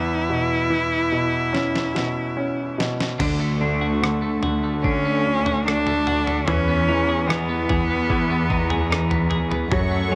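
A solo cello carries the melody up front, its bowed tone rich and nasal with vibrato, a soft attack and expressive portamento, in this tender, heartfelt pop ballad cut from a longer piece. A clear concert grand piano with deep bass accompanies it from the start, while a dusty, sampler-style drum kit with overdriven grit and a thumpy kick enters at 1.5 seconds with a fill. At 3.2 seconds a bright, twangy twelve-string electric guitar joins with picked arpeggios, and a studio cello section takes the bass line with a smooth, even bowed sound. Just before the close, a lush symphonic string section adds high sustained chords. The harmony moves from C#m7/E through D to Emaj7, all set in a light, small-room reverb.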